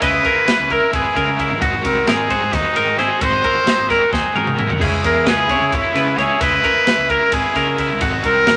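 This math rock and midwest emo excerpt moves at 263 BPM in eighths, in a straight 7/8, with a playful yet wistful mood over chords of C#madd9, G#7 and C#m. A clear, punchy trumpet with a vintage tone carries the melody up front, its scooped notes leading the band. Beneath it, a twelve-string electric guitar rings out bright, compressed arpeggios, while a twangy electric guitar with a scooped tone adds picked accompaniment in the background. A double-tracked, cranked stack guitar plays a riff with overdrive and tremolo, and a round, fuzzy fingered bass supplies a dark, overdriven low end. A crisp fusion drum kit with a punchy kick, medium-tuned snare and dark cymbals sounds airy and polished, and it plays a fill from 4.1 to 4.8 seconds, all within a moderate studio reverb.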